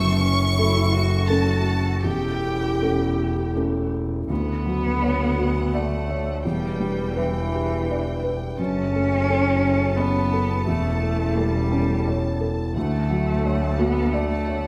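A felt-muted upright piano carries the accompaniment in this reflective, fragile neoclassical piece for piano and strings, its soft, mellow tone warm and intimate, with the audible creak of its action adding a natural touch. Above it, a chamber violin section sings the melody high in its range with intense, vibrato-rich bowing, while a single cello bows a focused second line that sounds somewhat distant. A bowed double bass, smooth, even and up front, anchors the low end, and a deep, moody analog pad with chorus sits in the background, holding slow-attack chords with a long release. The tempo drifts between 79 and 88 BPM in a rubato 3/4, moving through F#m, A7/E, Dmaj7 and Em7, with a new section arriving at 4.3 seconds. A wet recital hall reverb surrounds the ensemble, and the passage is cut from a longer piece, ending at 14.7 seconds.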